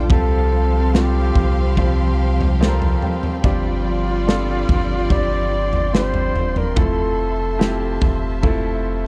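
Emotional and melancholic, this slow pop ballad fragment sets a breathy, distant flugelhorn melody with vibrato and scooped notes over an intimate concert grand piano, whose action noise is audible, and a round, up-front sine sub bass. A symphonic violin section, lush and touched with tape echo, carries a second line until 6.7 seconds, while a studio string section holds sustained chords with portamento in the background. A very quiet, twangy clean electric guitar picks arpeggios until 7.3 seconds, and a modern drum kit with a punchy kick and a pumping room sound plays kick, snare and toms, all set in a small room ambience over chords moving from Csus4 through G7sus4 to Fmaj7.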